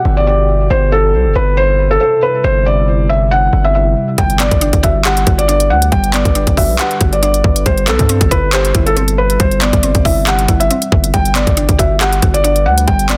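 Triumphant yet dreamy, this half-time trap and hip hop cut from a longer piece moves at 138 BPM in 4/4 and sits in G major, cycling through Gmaj7, C/G and Cmaj7/G harmony. From the opening second, a soft, mellow felt-muted upright piano carries the melody up front, its intimate tone touched by audible action noise, low-pass filtering and digital delay. Beneath it, a deep, moody ambient pad holds sustained chords in the background, with a slow attack, long release, chorus and its own reverb. A distorted, aggressive 808-style bass arrives almost at once, heavy and saturated with a noise layer and a fast, decaying attack. At 4.2 seconds a trap kit with a hard-clipped kick, crisp hats and handclaps punches in up front, joined by a woody, round mallet-like synth pluck with chorus set back in the mix. The dense, heavily limited modern master wraps the parts in digital ambience.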